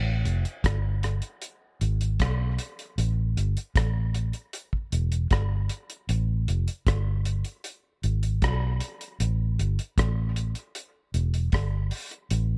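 A vintage, foam-muted fingered electric bass sits up front, round and amped in the low register, over a cloth-damped, thuddy drum kit with a tight kick, hi-hat and rim click in this dry, spacious and meditative dub reggae excerpt at 77 BPM in straight 4/4, tuned to A4 = 444 Hz, with the drums dark and smooth with a rolled-off top.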